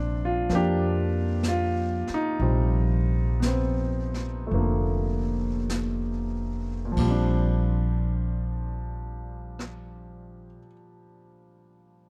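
A woody, pizzicato upright bass sits up front in this late-night, intimate jazz ballad fragment, its steel strings ringing low beneath a close, warm grand piano that opens on a Bb69 chord and supplies the accompaniment in a relaxed swing. A jazz brush drum kit joins at 0.5 seconds, adding brushed snare, rim clicks, hi-hat, dark cymbals, a crash and a boomy kick, all with the natural feel of a small room. The performance slows down through its opening phrase before a new section begins. The drums drop away at the 10-second mark and the bass follows at 10.5 seconds, and the piano carries on alone until the fragment breaks off at 12.1 seconds. The production is dark and dry, with little reverb, keeping the trio intimate and close.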